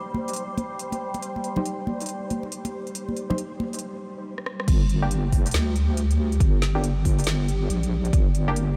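A half-time groove with a 62% 16th-note swing drives this brooding deep dubstep excerpt, cut from a longer piece. It opens on a resonant, overtone-sweeping drone holding sustained chords under chorus and reverb, while a flickering, grainy granular texture hovers in the background until 3.8 seconds, and hard-handed, close and dry congas with dub echo play until 3.7 seconds. A deep house drum kit with a woody snare, smooth hi-hats, rim clicks and crash cymbal carries the rhythm, and from 1.6 seconds a muted, detuned chord stab with a filter sweep and dub echo punctuates the bars. After a short break and a drum fill, the drop lands at 4.7 seconds on G minor, bringing in a layered electronic kick and an up-front wobble bass that is dark, compressed and wobbling under chorus. The mix sits in a light reverb, with the bass and kick dominating the low end and a heavy mood throughout.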